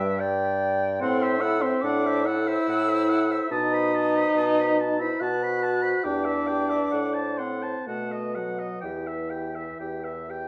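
Classical wind quintet: a slow romantic movement in E minor and 3/4, cut from a longer piece, unfolds with a solemn, yearning rubato at 62-74 BPM, tuned to A4 = 436 Hz. An airy silver concert flute with vibrato sings the high melody over a clear oboe second line and a mellow clarinet accompaniment in the background. A warm French horn and a smooth-topped bassoon bass sit up front, while the harmony leans through half-diminished and dominant chords toward B7 before settling on E minor, all heard in a moderate recital hall reverb that places the flute, oboe and horn at a distance.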